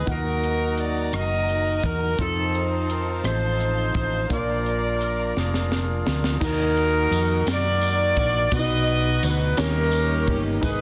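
A dense, heavily limited modern mix with light reverb and small-room ambience frames this soulful, fervent slow gospel in 6/8 at 57 BPM in Eb harmonic minor, cut from a longer piece. An up-front, vintage-toned saxophone section with vibrato and tape echo carries the melody over a deep-bassed grand piano, a round, dark tonewheel organ with fast rotary speaker and light overdrive held in the background, a punchy hollow-body electric bass, and a polished, airy fusion kit with dark cymbals and a high-tuned, softly clipped snare. Smooth, expressive chamber strings sustain chords until a drum fill at 5.4 seconds leads into the second section at 6.4 seconds, where the strings drop out and a jingly, saturated tambourine enters.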